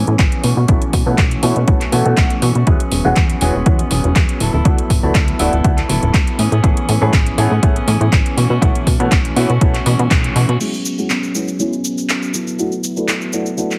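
An overdriven, punchy electronic kick sits up front in this joyful, feel-good filtered disco house excerpt at 121 BPM in E mixolydian, with a plucky, wave-folded analog bass and a slightly broken-up electric guitar riff both pumping under sidechain and low-pass filtering, while a bright concert grand piano with phaser moves through chords like B9sus4, E69, D69 and Amaj9. A layered house drum kit with metallic hats, cabasa, handclaps and crash cymbal rides a light 16th-note swing, its hats, cymbals and percussion pumping too. The mix is dry and heavily compressed with a radio-like sound, and filter sweeps shape the music throughout. After a band accent at 10.1 seconds, the kick and bass drop out by 10.6 seconds, leaving guitar, piano and drums to carry on.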